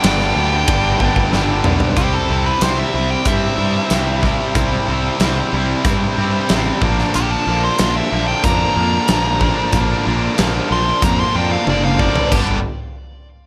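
Swaggering and confident, this classic rock excerpt struts at 93 BPM in a straight 4/4, moving from G to C and Bb over a big-room arena drum kit with a fat snare and punchy kick, a bright, double-tracked overdriven guitar riff up front, and a dark, round fuzz bass played with the fingers. A nasal lead guitar through a parked wah, present from the opening, launches at 2.0 seconds into an overdriven, picked solo that runs to 12.3 seconds, with drum fills leading into it and closing it out.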